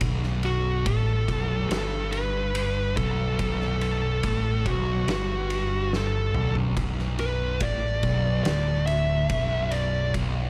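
The fuzz lead guitar enters at 0.5 seconds with a dark, picked, up-front melody that sits between F#4 and E5 over a single B minor chord. Beneath it, a thick, double-tracked fuzz guitar grinds out a low riff from B1 to A2, while a fingered electric bass with overdrive adds a round, amped bottom an octave down. This short cut from a longer stoner and doom metal piece moves at a slow 71 BPM in straight 4/4, and its mood is heavy and ominous. The oversized, low-tuned drum kit plays kick, snare, toms and ride cymbal, with a punchy kick, fat snare and dark cymbals that sound saturated and gritty in a bright stone room. A drum fill arrives at 5.9 seconds, and the whole sits in light reverb.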